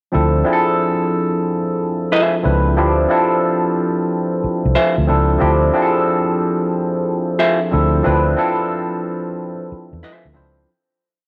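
A swung sixteenth-note groove at 91 BPM in 4/4 carries this smooth, late-night R&B and neo-soul piece in D minor, resting on a single Dm9 chord. A barky tine electric piano with a phaser plays pushed drop-2 chords with grace notes, while a foam-muted, round and punchy vintage bass lays back with muted ghost notes and chromatic approach notes. From 2.1 seconds a dark hollow-body jazz guitar adds sparse, clipped picked chords, all set in a moderate echo-chamber reverb before a fade-out from 8.0 seconds.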